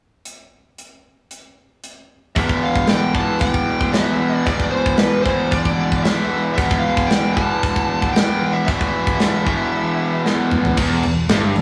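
A tight, gritty metal drum kit opens this heavy, epic excerpt alone at 114 BPM in E minor, its saturated crash cymbal and hi-hat sparkling over a tight kick, snare and toms in a rough rehearsal-room sound with a small room reverb. At 2.4 seconds an up-front overdriven electric guitar and a distorted guitar set further back lock onto an E5 riff, while a smooth lead guitar sings a high melody above them. After a drum fill at 10.3 seconds, a double-tracked fuzz guitar and a growly picked electric bass join on an E minor chord at 10.8 seconds.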